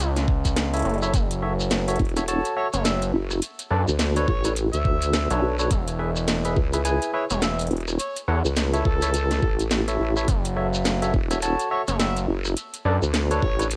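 This gritty, playful glitch hop passage opens at 0.0 seconds with a saturated, sync-edged synth bass sitting up front and a grainy, close acoustic shekere, swung on the sixteenths. A layered electronic drum kit with a cracking snare, metallic hats and rim clicks joins almost at once, along with a knocking electronic kick that briefly drops out before settling in. Both kits sound tape-warm and re-recorded in a small room. A barky tine electric piano, played through a combo amp, adds stabs that pump against the sidechain and trail off in tape echo over a cycle of A, F#m7, Bm9 and E. At 2.0 seconds a nasal, formant-filtered wobble bass with chorus enters alongside the first bass. At 2.6 seconds a mellow harmonica begins a jazz-style solo with light vibrato and scooped notes, colored by vintage 12-bit sampler grit and tape echo. The whole mix has the dry, close feel of a home cassette recording, with little reverb.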